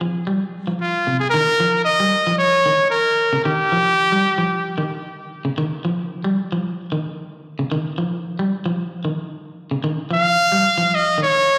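A straight 4/4 afrobeat groove at 113 BPM drives this funky, intense live club fragment, where a twangy, slightly broken-up electric guitar plays fingered arpeggios up front with spring reverb and slapback echo over Fsus2 moving to a rootless Dbadd9, while a brilliant, pop-style solo trumpet enters at 0.8 s with a vibrato-laden melody coloured by slapback and tape echo and returns at 10.1 s, all heard through the venue's PA in a lush hall reverb.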